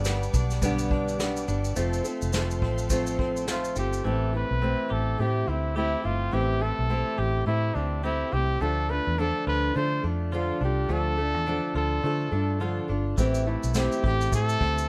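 Acoustic pop with an easy-going, carefree mood and a gentle swing, built on a fingerpicked steel-string acoustic guitar, a round, foam-muted vintage electric bass and a twangy, direct-recorded clean electric guitar playing arpeggios in the background throughout. A lush bowed string section and a soft brush drum kit with punchy kick, snare and shaker open the piece, the strings stopping at 4.0 seconds and the drums returning at 13.2 seconds. A warm trumpet with light vibrato carries the melody from 3.5 seconds, all set in light reverb.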